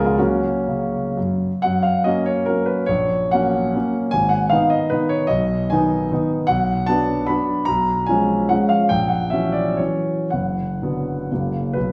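A solo concert grand piano opens this short fragment of a classical, romantic dance in triple time, its dotted rhythms giving the music a graceful, gently rustic lilt. The pulse is shaped freely with rubato, so the dance breathes and stretches rather than marching strictly in time. The instrument sounds warm and open, with a deep bass reaching down to F#1 and a long sustain letting notes ring. At 6.5 s the harmony darkens into a minor colouring, passing through chords such as Bm and C#7/B before settling back on F# at 11.3 s. A wet recital hall reverb surrounds the piano, and the listener seems seated further back in the room, so the sound blooms with a spacious, lingering tail.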